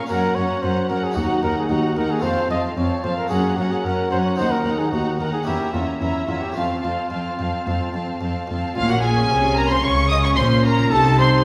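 A mellow, close-miked solo trumpet carries the melody over two focused violin lines, bright plucked harpsichord, a lush viola section in the background and an up-front cello bass in this dramatic, driving baroque-style concerto passage, cut from a longer piece and heard from further back in a reverberant recital hall, with an intense double bass section joining at 8.8 seconds.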